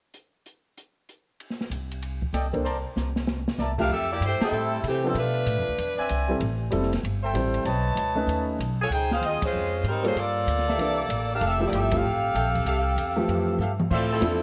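A swinging 4/4 at 192 BPM drives this energetic, brassy big band excerpt in F major, with the open jazz drum kit starting at 0.1 s on dark cymbals, a medium-tuned snare and a boomy kick, adding fills around 3.0 s and again near the close. The upright bass joins at 1.7 s, plucked, woody and up front on steel strings, while a clear grand piano with long sustain comps from 2.5 s through colorful extended harmony such as Cm13, Bbmaj9 and Fmaj9. A tight, close-miked trumpet section with light vibrato punches out stabs from 2.3 s, its analog delay trailing each hit, and the band lands shared accents at moments like 4.4 s. The saxophone section carries the melody up front yet roomy, its vibrato-laden ensemble tone also treated with analog delay, dropping out briefly before returning at 8.8 s to play to the end. Spring reverb and a small room give the whole a lively space, but the sound is colored by worn cassette tape whose warbling pitch drift lends a faded, vintage character.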